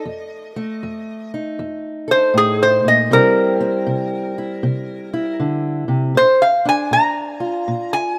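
Acoustic country blues with a rollicking, swaggering mood, this short excerpt moves at 79 BPM in 4/4 with a swung eighth-note feel in F mixolydian, passing through F7, C7 and Bb7. A bright, metallic, nasal resonator slide guitar, played with fingerpicks and a steel bar, carries the melody up front throughout its 8.2 seconds. Beneath it, a dark, boxy parlour steel-string guitar fingerpicks the accompaniment, its finger squeaks audible in the light small-room ambience of a rough home demo.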